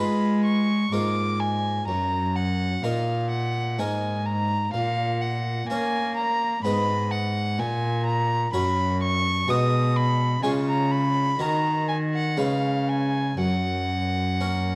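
Violin, harpsichord and cello begin together in this grave, flowing baroque-style sonata movement in triple time, a brief passage cut from a longer piece, where the dark, reedy, gut-strung violin carries a smooth-topped, up-front period-style melody over a rich, bowed cello bass and a dry, brilliant Italian-style harpsichord with octave strings, all captured on close, detailed microphones with light reverb and vinyl crackle.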